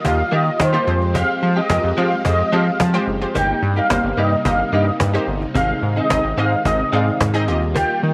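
A snappy, close and dry cajon drives this confident, energetic dance-pop excerpt in straight 4/4 at 109 BPM in C minor, with a glossy, retro chorused synth bass sitting up front beneath chords moving from Ebadd9 through Fmadd9, Cm7/G and Ab. A mellow, evolving filtered supersaw swell carries the melody from 0.1 seconds, its detuned sawtooth voices shaped by a moving notch, while a bright, clean direct-recorded electric guitar picks a compressed, chorused riff from 0.2 seconds. In the background, a punchy, lush unison pluck and a vintage, warbling string machine of violas with ensemble chorus fill out the harmony, all set in light reverb.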